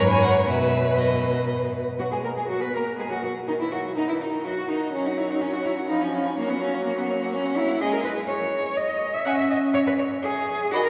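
A wet cathedral reverb with a long 4.1-second tail surrounds this string quartet, giving it the spacious ring of a church or concert hall. It is a cheerful, lively classical-period movement in B major, cut from a longer piece and moving at 124 BPM in 3/4 with a flexible, rubato feel. The first violin carries the melody from 0.1 seconds, its bowed tone smooth and even with vibrato. Beneath it, the second violin plays a supporting line that sits in the background, while the viola provides a focused accompaniment. The cello stands up front as the bass, its rich, bowed sound topped with a silky upper edge as it reaches from low F#2 up to F#5. The harmony moves from B through F#sus2, D#m and C#7/E# before settling toward G#5 and C#5.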